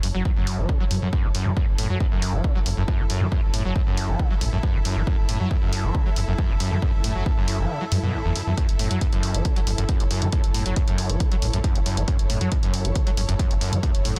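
A squelchy, sawtooth acid bass riff, colored by lush chorus, 12-bit sampler grit and digital delay, opens this driving, hypnotic peak-time techno excerpt alongside a growling FM bass, dry electronic hi-hats and a dark, bowed symphonic string section that fades in throughout, all four pumping against the sidechain. A heavy, layered kick, re-recorded in a large room, sits up front from 0.3 seconds and drops out briefly at 7.7 seconds before returning. The mix is dense and heavily limited, with a relentless, straight 4/4 feel under a single minor chord.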